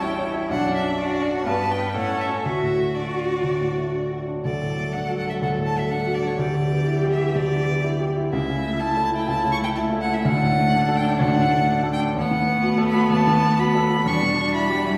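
The violin leads this spirited, lively classical-period movement for piano quartet, its single bowed line carrying the melody high in its range with smooth, even vibrato that sits up front yet sounds slightly distant. Beneath it, a dark, mellow baby grand piano provides the accompaniment with long sustain, standing forward in the blend and reaching down into its deep bass register. The cello carries a second line with expressive vibrato and portamento, while the viola fills in the middle with a focused, bowed accompaniment. All four parts play throughout this short passage cut from a longer piece, moving from an opening section into a new one at 4.4 seconds, after which the harmony shifts through Em7/D, A/C#, D and B7/D# before arriving on Em7. The quick, straight pulse and the lush reverb of a concert hall or church give the ensemble a resonant, lively sound.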